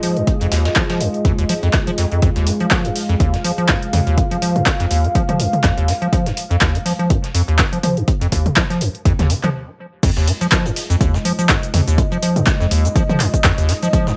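Acid house at 123 BPM in F minor with a 16th-note swing, this hypnotic, gritty cut from a longer piece sits on an Fm7 chord. A squelchy, hollow square-wave acid bass riff with resonant filter plucks and overdrive sits up front beside an overdriven electronic kick and a punchy analog drum machine with cabasa, crash, handclaps, hi-hat and toms, while a dark, detuned sawtooth pad holds slow-attack chords and a compressed, sampler-style kit adds hi-hat and snare in the background. Both the pad and bass pump against the kick, the whole track carries light reverb and a cassette home-recording sound, and a brief stop at 9.5 seconds gives way to a drop at 10.0 seconds.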